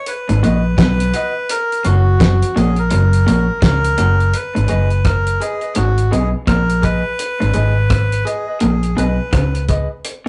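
This rough rehearsal-room recording has a small-room ambience, warm saturation and a dulled top end, giving a snippet of roots reggae at 84 BPM in G# minor a meditative, serious mood over a swung sixteenth-note feel. Up front, a cloth-damped, thuddy drum kit with a fat snare, tight kick, hi-hat and rim click sounds gritty and rolled-off, while a dark, round, foam-muted fingered bass sits equally close and carries the low end. An electric guitar through a small old amp plays a low, slightly broken-up, lo-fi riff bathed in spring reverb and slapback echo, and a clean, twangy, picked electric guitar adds compressed accompaniment higher up, further back in the mix. A reedy, breathy, nasal melodica carries the airy melody in a narrow middle register until 9.6 s. The harmony moves from B to F# and settles on G# minor at 4.3 s as the second section begins.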